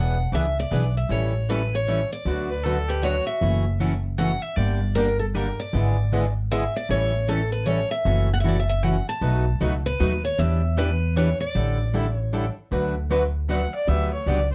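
Charming, lively jazz manouche in a swung waltz time, cut from a longer piece, where a bright, up-front picked steel-string guitar carries the melody over two picked accompanying guitars, one parlour-toned and one boxy, with a woody pizzicato upright bass underneath and a nasal, biting violin with light vibrato that appears briefly at 2.5 s and returns for a short solo at 13.5 s, all in a dark production with light reverb.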